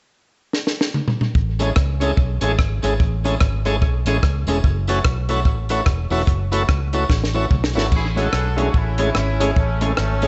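Upbeat, bouncy ska with a swung feel, opening on a drum fill from a compact cocktail kit with a punchy kick, high-tuned snare and dark cymbals, touched by tape echo, before a round, foam-muted electric bass joins at 1.4 seconds. A slightly broken-up guitar through a small old amp with spring reverb and a shouting tonewheel organ with slow rotary speaker and key click fill out the Amaj7 to F#m7 groove, while a distant, jingly tambourine sits in the background. At 7.9 seconds a clear horn section with light vibrato takes the melody, and the fragment is cut from a longer piece.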